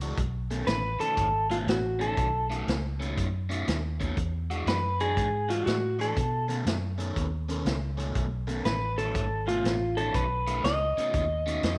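An overdriven semi-hollow guitar riff with a phaser opens this swaggering, rollicking electric blues shuffle at 120 BPM in B mixolydian alongside a dark, round, foam-muted bass and a vintage drum kit with a punchy kick and a rolled-off top, before an up-front, slightly broken-up, compressed slide guitar takes the melody at 0.7 seconds over B9 and E9 chords, all set in a moderate echo chamber reverb with small room ambience in this short cut from a longer piece.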